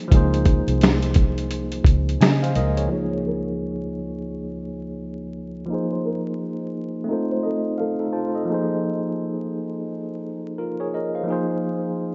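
A swung 86 BPM groove in 4/4 opens this cosy, mellow lo-fi hip hop excerpt in Db major, with a gritty, compressed sampler-style drum kit of thumpy kick, medium-tuned snare, hi-hat and finger snaps sitting up front beside a dark, round, foam-muted electric bass. Both drums and bass drop out at 2.9 seconds, leaving a bell-like tine electric piano, bright and clean through a low-pass filter, to carry the chords from Dbmaj7 through Ab69/F and F7 to Ab. At that same point a filter sweep begins and runs to the end at 12.1 seconds. From 2.9 to 8.1 seconds a soft, thick-felt upright piano adds an intimate melody in the background, its short notes filtered and trailed by tape echo. Light reverb, vinyl crackle and a rough home-demo mix with dulled highs give the piece its dusty character.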